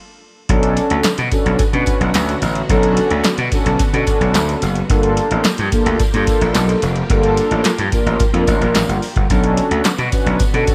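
Early-eighties boogie funk with a slick, funky groove, where a gritty, overdriven slap bass and a punchy electro drum machine with deep kick, handclaps and metallic hats sit up front beside mellow, round synth brass with chorus, while a lush string machine and a jingly tambourine hover in the background over Bm9 and Gm9 chords, all following a band accent in the opening 0.5 seconds of this cut from a longer piece.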